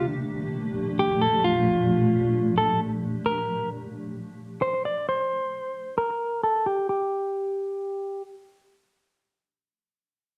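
A clean, picked electric guitar carries the melody up front through 8.2 seconds of this hazy, spacious half-time hip hop excerpt, its compressed tone warbling with pitch drift, softened by a low-pass filter and trailed by slapback echo, while a cloudy, detuned granular pad holds a Gm9 chord until 3.2 seconds, and a filter sweep runs across the opening 6.9 seconds, all set in a moderate plate reverb.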